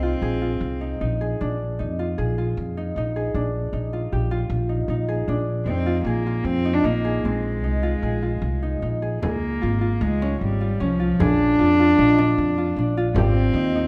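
Contemporary instrumental chamber music in an uneven 5/4 metre, shimmering and playful, cut from a longer piece. A Celtic harp plays fingerpicked, ringing arpeggios up front throughout, while a pizzicato upright bass on steel strings adds a woody, warm low line close to the listener. A single bowed cello carries the melody sul tasto, with a soft attack and a pure, floating tone whose smooth top sits forward in the mix; it sounds only briefly at the opening and then returns at 5.7 s. At 9.2 s the harmony turns toward major-seventh and dominant chords as a deep, large frame drum, played with hard hands in a small-room sound, joins in the background. A moderate recital hall reverb surrounds the ensemble.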